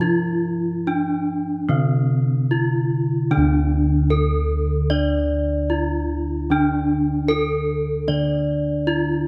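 A bright, up-front bronze metallophone carries the melody with a horn mallet, its paired tuning creating shimmering beats and an airy ring, in this serene, ceremonial Javanese gamelan fragment at 76 BPM in 4/4. Beneath it, a lower bronze metallophone struck with a wooden mallet plays the accompaniment, while bossed gongs supply a round, beating bass, and all three sound throughout the 9.3 seconds. A moderate concert-hall reverb surrounds the ensemble, and the music moves into a new section at 3.3 seconds.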